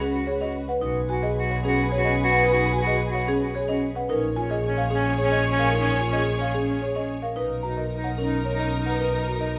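A straight 3/4 pulse at 110 BPM carries this short excerpt of minimalist classical pattern music in G# dorian, its mood both meditative and urgent. A buzzing marimba played with medium mallets takes the melody from G#4 to A#5, its hardwood bars sounding woody, dry and boxy, while a mellow soprano saxophone with light vibrato and a soft attack traces a second line in a narrow range from C#4 to F#4, placed at a roomy distance. Alongside them, a vibraphone with soft mallets spins arpeggios, metallic and ringing with a slow motor vibrato and an airy glow. A rich, lush studio string section holds sustained bowed chords from further back, and a bowed double bass, smooth, even and up front, anchors the low end between A#1 and C#2. The harmony moves from C#7sus4 to G#m7/B at 0.8 seconds, then A#m7 and finally Bmaj7 at 7.4 seconds, all within 9.6 seconds, captured with close, detailed microphones and light reverb.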